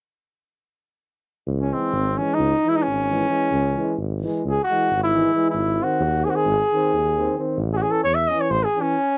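A punchy, close-miked tuba opens the bass line at 1.5 s with scooped notes and light vibrato, and a mellow, vintage-toned trumpet soon takes the melody up front in a classical style, its sound carrying cassette-tape character. Behind them, a clear, roomy trombone sits distant in the background while a dark, close-miked euphonium adds accompaniment, both with light vibrato and the same tape colouring. This restless, virtuosic Balkan folk fragment is a home recording in a booth, cut from a longer piece, moving from C#m through G# to A before the trumpet's last note ends at 9.2 s.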